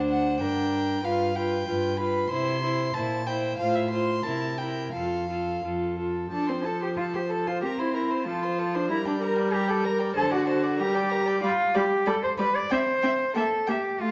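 A quick classical-period string quartet movement in F major at 93 BPM, spirited and graceful with a rubato feel in 2/4, in which a first violin with light vibrato carries the high melody over a dark, nasal second violin, an up-front viola accompaniment and a reedy gut-string cello bass, all four bowed in period style and set in a wet recital-hall reverb, heard as a passage cut from a longer piece.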